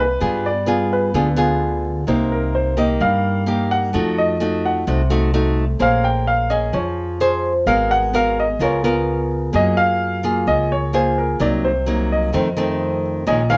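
A dark, intimate baby grand piano with audible action noise carries the melody in this smooth, melancholic bossa nova excerpt, over an up-front, fingerpicked nylon-string guitar with finger squeak and a woody, thumpy pizzicato upright bass, the trio playing live together in a moderate studio reverb through a progression rich in ninth chords.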